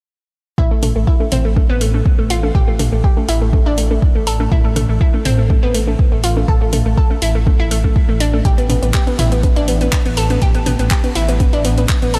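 Lightly reverberant, this excerpt of dreamy, driving progressive house moves at 122 BPM in a straight 4/4. An overdriven, layered electronic kick sits up front with a small-room character, joined from 0.8 seconds by a similarly overdriven deep house kit of handclaps and hi-hat. A dark detuned saw bass holds a deep, rumbling A1, its beating tone pumping with the sidechain. Tape-warm electronic toms and congas also pump with the sidechain in the background. Over them an analog pluck plays arpeggios between A3 and A4: round and bright, with a noise layer, a filter sweep and a moving notch, colored by chorus and tape echo and pumping with the sidechain as well. The harmony rests on an A5 chord until the chord falls away at 8.4 seconds.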